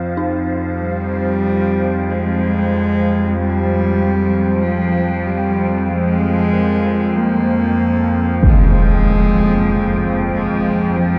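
Up front, a dark, reedy cello with a gut-string tone carries a bowed melody with tape echo from 0.8 s, over a deep, detuned analog pad, an overtone-sweeping drone, an eerie, inharmonic synth bell playing arpeggios and a breathy, wind-like noise texture, all sunk in cavernous cathedral reverb, and a huge, bright impact strikes at 8.4 s in this desolate dark ambient drone.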